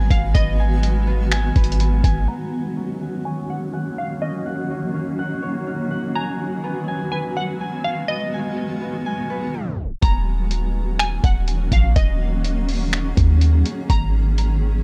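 Melancholic and ethereal, this atmospheric cloud-rap fragment, cut from a longer hip hop piece, moves in a half-time feel over Abm7 and Ebm7 chords. A cloudy, blurred granular pad sustains chords throughout with sidechain pumping and its own reverb, while a crystalline wavetable pluck carries the high melody through chorus, tape echo and a low-pass filter. A fingerpicked concert harp rings out arpeggios beneath it, softened by filtering and tape echo, until it stops at 12.6 seconds. A boomy 808-style bass and a muffled, compressed sampler-style kit of thumpy kick, hi-hat and finger snaps sit up front for the opening seconds, then drop out while a filter sweep runs from 2.3 seconds. A tape stop at 9.5 seconds brings the bass and drums back in at 10.0 seconds, and light reverb gives the whole mix a hazy glow.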